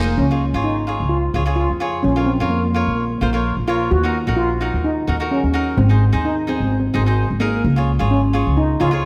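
Calypso at 129 BPM in 4/4 with a light swing on the sixteenths, bouncy and sunny in Db major, cut from a longer piece and lasting about 9.1 seconds. A double seconds steel pan carries the melody, played with soft rubber sticks for a mellow, airy, shimmering tone. A bright, crisp picked cavaquinho provides the accompaniment, sitting a little lower in the mix than the pan. The pizzicato upright bass on steel strings is the most up front of the three, woody, dark and thumpy in its low register. The harmony moves through Dbadd9, Bbm, Ebmadd9 and Ab before settling back on Db, all set in a moderate scoring stage reverb.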